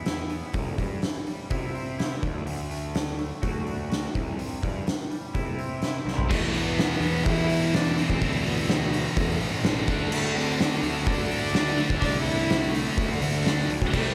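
Dark and brooding, this quiet-loud alternative rock piece moves at 126 BPM in 4/4, opening with a twangy, clean electric guitar picking arpeggios through analog chorus over a growly, fuzz-overdriven picked bass and an oversized low-tuned drum kit with a punchy kick, fat snare and dark cymbals sitting gritty and up front. After a drum fill at 6.1 seconds, the arpeggios give way at 6.3 seconds to heavy riffs from a scooped high-gain guitar and an overdriven semi-hollow guitar with phaser tucked in the background, while a pure, floating cello sings the melody with a soft attack and slapback echo. A distant, reedy chamber string section holds very quiet sustained chords above it, all in a light small-room ambience before the cut from a longer piece ends.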